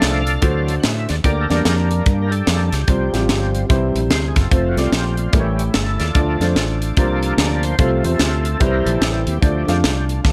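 This dry, close-sounding recording, with little reverb, is a short passage cut from a longer uptempo gospel piece at 147 BPM in 4/4, swung on the eighth notes, with a mood both reverent and jubilant. The overdriven tonewheel organ carries the solo throughout, its gritty, thick tone marked by key click, second-harmonic percussion, chorus vibrato and a slow rotary speaker. A woody upright piano accompanies it with an intimate, natural sound, its action noise audible beneath the notes. Up front, a fingered electric bass gives a dark, round, punchy low end. A tight funk kit, with its high-tuned snare, tight kick and hi-hat, sits in a small-room, mid-forward space. The harmony moves from D7 through Csus4, F and A7 to C9sus4 before landing on Dm at 9.4 seconds.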